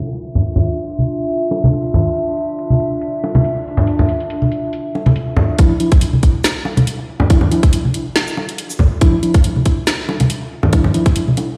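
Brooding and meditative, this deep dubstep excerpt moves in a half-time feel with a light swing on the sixteenths. A dark analog pad holds sustained D minor add-nine chords throughout, its detuned, sub-octave tone softened by chorus and phaser, while a garage drum kit of hi-hat, shaker and woody snare sits low-passed in studio reverb with metallic hats. Bright, up-front congas and bongos, played with soft hands, join at 0.4 seconds under a filter sweep. At 5.6 seconds the build-up begins as a tight, layered electronic kick drops in up front and a mellow tine electric piano adds clean stabs through low-pass filtering and dub echo. The whole mix sounds as if played on a big sound system in a bare stone room, lending a muffled, cavernous depth.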